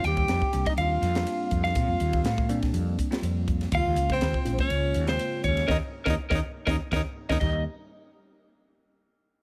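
The recording is set in light studio reverb, framing a slick, soaring electric jazz fusion passage cut from a longer piece, moving at 122 BPM in 4/4 with a slight sixteenth-note swing in Eb mixolydian over F9sus4 and Eb9sus4 chords. An up-front, slightly broken-up picked guitar carries the melody while a breathy, close-miked tenor saxophone with scooped notes plays a second line, a bell-like tine electric piano with phaser accompanies, and a woody, growly fretless bass sits loudest underneath. A crisp drum kit with a high-tuned snare and punchy kick drives the groove, and the band hits an accent from 5.7 seconds before the parts fall away by 7.6 seconds.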